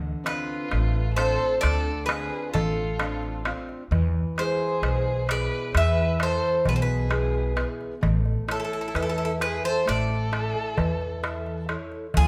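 Fingerpicked steel-string acoustic guitar, with audible finger squeaks, and a growly, woody pizzicato upright bass open this reflective, wistful Greek folk passage in 9/8, cut from a longer piece. At 0.3 seconds the metallic, double-strung bouzouki takes the melody up front, joined by a dark bowed violin with vibrato on a second line and a crisp, small metal-shell darbuka played close and dry with hard hands. The band plays live in one room with moderate large studio reverb, moving through Dm7, E and A.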